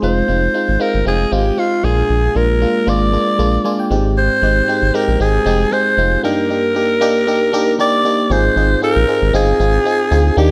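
A romantic, glossy slice of 1980s-style pop at 116 BPM in 4/4 with a light sixteenth-note swing, cut from a longer piece and moving through Fm7, Bb7, Abmaj7 and Ebmaj7/G before settling on Ab6 at 8.3 seconds. A breathy, raspy alto saxophone carries the melody up front with vibrato, scooped notes and a digital delay, over a glassy, bell-like FM electric piano treated with chorus and phaser that slips in a short fill at 3.4 seconds. Underneath, a round, dark analog bass holds a deep, sustained low end, all set in a small room with light reverb.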